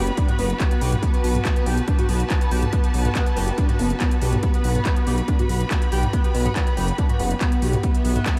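A straight 4/4 pulse at 141 BPM drives this hypnotic, relentless peak-time techno excerpt, tuned to A4 = 435 Hz over a B5 chord, where a heavy, overdriven kick sits up front beside a layered kit of handclaps, smooth hats and toms, both kick and kit carrying overdrive and small room reverb, while a thick, menacing detuned saw bass, a gritty, screaming, guitar-like synth lead riff with distortion, phaser, chorus and analog delay, and a lush bowed string section all share sidechain pumping inside a dreamy mix soaked in huge ambient reverb.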